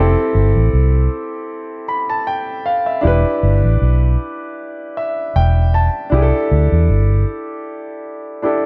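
A round, foam-muted electric bass and a clear concert grand piano open together on an Fmaj7 chord in this romantic, sweet lovers rock reggae fragment, moving at a relaxed 78 BPM with a gentle sixteenth-note swing. The piano comps through Em7 and adds a short fill from 4.6 to 6.1 seconds before settling on a rootless C6, while the dark, amped bass sits up front until it drops out at 7.2 seconds. Light reverb and a dark production give the cut a soft, intimate glow.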